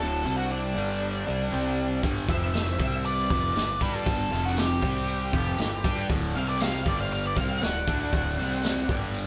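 A straight, swaggering 4/4 groove drives this gritty blues rock and southern rock excerpt, with a punchy vintage drum kit joining at 2.0 s beneath a fuzzed, fingered electric bass and a bright, double-tracked semi-hollow guitar riff up front. A dark octave-fuzz lead guitar carries the melody while a biting, overdriven second lead sits in the background, and a very quiet tonewheel organ holds sustained chords through a slow rotary speaker. The band plays live together in a stone room with moderate reverb and a rolled-off top.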